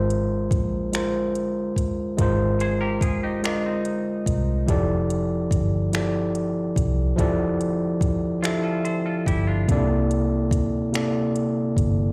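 A gritty, overdriven tine electric piano and a dark, foam-muted fingered bass open this short fragment of slow, sensual R&B in a straight six-eight, with a smooth drum kit of finger snaps, metallic hi-hat and a soft kick joining almost at once. The piano sits up front, its amp-driven grit carrying lush extended chords that move from Ab69 to Fmaj13 and then C13, while the round, amped bass holds the low end. The drums sound electronic and produced, with a tape-warm, up-front character. A bright, clean semi-hollow electric guitar adds a quiet second line at 2.6 seconds and again at 8.4 seconds, its picked, compressed notes colored by a warbly pitch drift and slapback echo. The whole performance has the feel of a live gig heard through the venue's PA, with light reverb and the ambience of a recital hall.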